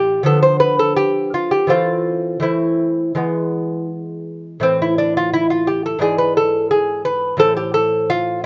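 A solo lute, delicate and fingerpicked on gut double strings with some octave-doubled courses, sits up front under light reverb and close, detailed microphones in this introspective, grave baroque-style dance in A minor, moving with rubato around 82-88 BPM in 4/4 through chords from Bdim/D to E7/G# before settling on Am in this brief 8.5-second fragment cut from a longer piece.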